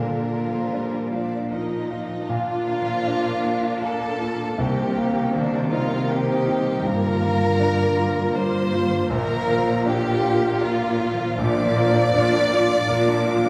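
Heard from further back in a reverberant recital hall, this uplifting, hopeful cinematic passage in Bb major moves at a rubato 79 BPM in 3/4, with a rich chamber violin section carrying the vibrato-laden melody in the background, an up-front studio violin section adding an expressive second line with portamento, a distant viola section and a bright, short-sustaining grand piano filling out the accompaniment, a ringing, fingerpicked concert harp playing arpeggios, and a clear, focused cello section holding the bass under a Bb, Cm7, Gm7 progression.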